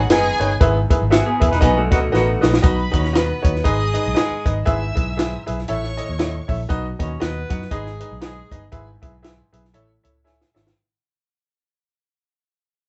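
A compact cocktail drum kit sits up front in this danceable, swung 1960s-style soul excerpt, its dry sound built on a punchy kick, a high-tuned snare and hi-hat, with short fills at the turns. Beneath it, a vintage foam-muted fingered electric bass gives a round, dark low end, while a worn, clear-toned concert grand piano with short sustain plays accompaniment near the front. A saxophone section with a smooth top and a lush, distant violin section with vibrato carry second lines. An electric guitar through a small old amp adds a brief, slightly broken-up, lo-fi riff near the beginning. The band plays live in one room with a short, wet ambience; a fade begins at 2.6 s, the violins drop out at 6.5 s, and a grand piano fill arrives at 9.7 s as the excerpt fades away.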